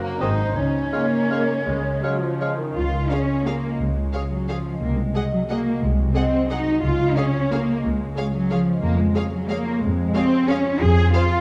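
A rubato 3/4 lilt carries this festive, elegant orchestral ballroom waltz in Db major, moving between 154 and 194 BPM, with a ringing, fingerpicked harp spreading arpeggios beneath a violin section that sings an even, vibrato melody while a second violin section holds a background line. An airy, close-miked flute, an oboe and a bassoon add brief lines only in the opening 2.6 s, while lush violas with portamento fill the middle and woody cellos sit up front over a smooth-topped bowed double bass section. A moderate scoring stage reverb gives the dark, warm production a roomy glow as the harmony moves from Ab through Db to a closing Fm.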